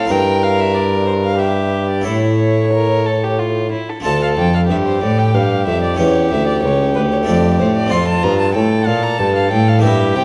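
In a straight triple metre, this grave, introspective baroque-style sonata movement with continuo is a fragment cut from a longer piece, with two bowed violins of rich, reedy gut-string tone sounding throughout, one carrying the melody and the other a lower second line. Beneath them, an airy, brilliant Flemish-style harpsichord with three sets of strings plucks the accompaniment up front, while a close-miked bassoon with vibrato holds the bass, both sitting louder than the period-style violins. A recital hall reverb surrounds the ensemble with a wet, lingering resonance.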